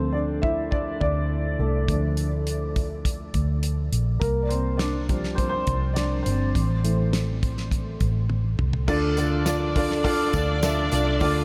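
A dreamy, reverb-soaked mix frames this bittersweet, driving piano-driven pop excerpt in D minor at 103 BPM, where a dark, woody upright piano with subtle chorus carries the opening over round, foam-muted electric bass and a damped 70s drum kit with a fat snare, until a drum fill leads at 8.9 seconds into a smooth, bowed violin section line and a jingly tambourine in the background as the chords move from Dm through Csus4 and Am back to Dm.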